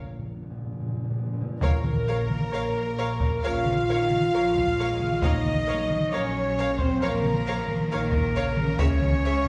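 A slow, straight 4/4 pulse at 67 BPM underpins this dark, epic orchestral film-score cue in Bb minor, cut from a longer piece. It opens with a close, dry timpani fill on Bb2, struck with medium mallets, and a drum fill joins at 0.7 seconds before the full orchestra arrives on a Bb minor chord at 1.6 seconds. From there a compressed, saturated taiko ensemble played with hard sticks drives the rhythm, while a mellow French horn section holds sustained chords and a distant, roomy trumpet section adds stabs with light vibrato. Rich, bowed violins carry the melody between Bb4 and F5 with smooth vibrato, supported by a focused second violin line, a lush viola accompaniment sitting in the background, and a close, expressive double bass section anchoring the low end. A rich, smooth cello section enters at 3.4 seconds to thicken the bass, and the whole ensemble is heard from further back in a reverberant scoring stage.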